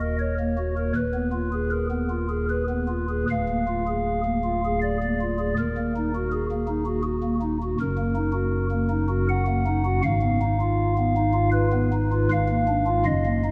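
A cavernous concert hall surrounds this short cut from a longer classical chorale-style piece, its 2.3-second reverb trailing each chord into the space. A pipe organ plays alone throughout, its stopped flute registers sounding soft and hollow, with a gentle chiff at the start of notes and a baroque voicing that sits up front against the wet room. The mood is grave and dark, in Eb minor at 80 BPM in 3/4, with a rubato feel that lets the pulse stretch. The harmony moves from Ebm through Fm7b5/Eb and Bb7/D, returns to Ebm at 5.6 seconds, and then passes through Ebm/Gb and Fm7b5/Ab before settling on Bb7/Ab at 12.3 seconds. The organ spans a deep range from D1 up to Gb5, tuned to A4 = 439 Hz, and the whole 13.5-second passage holds a single section.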